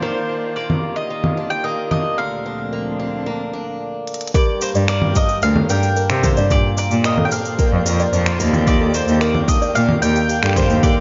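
Folktronica at 111 BPM with a playful, delicate mood: a mellow, round mandolin melody with tape echo rides over soft, sul tasto string quartet chords and bright, boxy picked swing-style acoustic guitar arpeggios with finger squeak, low-pass filtering and tape echo; crisp-hatted organic electronic drums of congas, finger snaps, hi-hat and shaker enter at 0.7 seconds, and a drum fill at 4.1 seconds leads into a fuller passage that adds a woody kalimba second line with delay, a deep, up-front electronic kick, a very quiet twinkling granular shimmer and a clear, focused bowed cello bass with vibrato, under light reverb.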